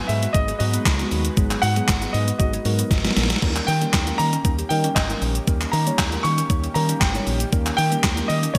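A bright, 1980s-style digital production with light reverb frames this driving, confident dance-pop excerpt at 117 BPM in G# harmonic minor, which moves from G#m7 to D#7 at 3.4 seconds. An up-front, overdriven drum machine with a thumpy kick, gated-reverb snare, handclaps, hi-hat, shaker and crash plays a fill at 2.9 seconds. A round, punchy, envelope-filtered fingered bass, a mellow tine electric piano and a shimmering chorused pulse-width pad in the background pump with sidechain compression, while a polished grand piano carries the melody with delay and a very quiet, woody FM synth pluck adds arpeggios from 0.2 seconds.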